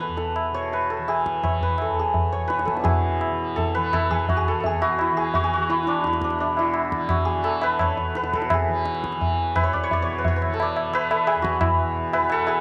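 Meditative and radiant, this Hindustani classical excerpt in raga Khamaj on E moves at 170 BPM in a straight 4/4 and gradually speeds up over its 12.6 seconds. An up-front, shimmering hammered santur carries the melody from A3 to E5, while a softly plucked, buzzing tanpura holds a mellow drone underneath and a high-tuned, close and dry tabla keeps the rhythm. All three play throughout in a moderate echo-chamber studio reverb, with the music moving into a new section at 2.9 seconds.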